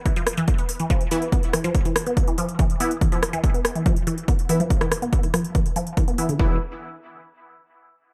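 Hypnotic and industrial, this short cut from a longer piece of driving peak-time techno runs at 142 BPM in a straight 4/4. A punchy, layered electronic kick drum sits up front from 0.1 seconds, joined by a techno drum kit of smooth hi-hats and rim clicks, with the hats pumping against the kick and trailing an analog delay. Also starting at 0.1 seconds, a juicy, squelchy resonant blip pluck carries the riff between D3 and B3, its brilliant sawtooth tone colored by a phaser, sidechain pumping and dub echo while a filter sweep moves across it. At 1.1 seconds a detuned supersaw stab enters between E3 and E4, low-pass filtered and phased, also pumping and swept by a filter before echoing into the mix. Only at 6.4 seconds does a growling, thick FM bass surface briefly on E1 in the background, all within a lightly reverberant, echo-heavy sound.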